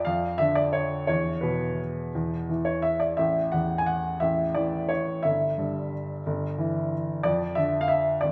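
A clear, woody upright piano plays alone and up front, its natural tone carrying an elegant, sparkling classical waltz in 3/4. The tempo moves freely with a rubato feel somewhere between 163 and 190 BPM, and the part spans from G1 up to G#5. The harmony passes from Dm/F through E5, A and Em/G before returning to Dm/F at 7.2 seconds. A wet recital hall reverb with a 1.7 second decay surrounds the instrument. This brief 8.3 second section is cut from a longer piece.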